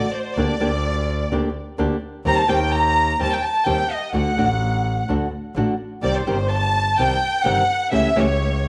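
A moderate echo-chamber reverb and small-room ambience surround this dramatic, tense tango fragment at 127 BPM in 4/4, played with a rubato feel. A close, smooth studio violin section carries a vibrato-rich, bowed solo line up front, touched with slapback echo. Beneath it, a small, fingerpicked nylon-string guitar and a biting, earthy bowed double bass with light vibrato move through Gm/D, Cm/Eb, D and Cm before landing on A7/C# at 7.9 seconds.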